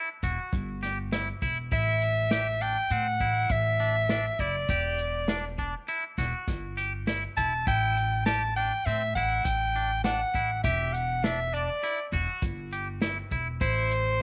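A bright, twangy electric guitar opens this excerpt with clean, picked arpeggios run through tape echo. Woody pizzicato upright bass and an acoustic drum kit played with bundle sticks join almost at once, setting up an intricate, tense progressive groove in 5/4 at 101 BPM in A dorian. At 1.7 seconds a clear soprano saxophone steps up front with a jazz-style solo melody, full of vibrato, subtone and scooped notes, over light studio reverb.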